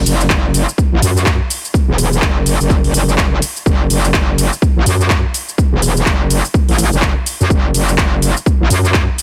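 A metallic, distorted wobble bass opens this swaggering, aggressive bass house excerpt in F# minor at 125 BPM with a 59% sixteenth-note swing, its bright, chorused FM tone pumping against a punchy overdriven electronic kick that enters at 0.3 seconds, while a layered house kit of handclaps, hi-hat and shaker, re-recorded in a large room, rides up front in a dry, close mix.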